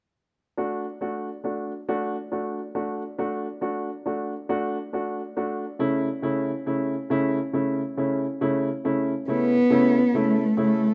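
A dark, bowed solo cello, close and up front with expressive vibrato and portamento, enters at 9.3 s over a clear, smooth grand piano with a vintage tone and short sustain, also up front, whose D and then A/C# chords carry this swaying, tender six-eight pop ballad fragment from 0.6 s, set in a moderate plate reverb within a rough home demo mix.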